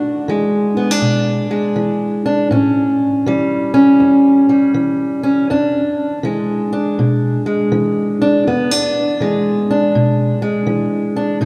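Rollicking and swaggering, this short blues fragment, cut from a longer piece, struts along at 81 BPM in 4/4 with a swung eighth-note feel in E mixolydian. A lone fingerpicked steel-string acoustic guitar carries everything, its dark, boxy parlour tone sitting up front and ranging from E2 to D#4. The harmony moves from E7 to A7 at 2.5 seconds and back to E7 at 5.5 seconds. A wet church reverb with a 3.6-second tail surrounds the guitar, giving the 11.4-second passage the sense of a large hall around an intimate instrument.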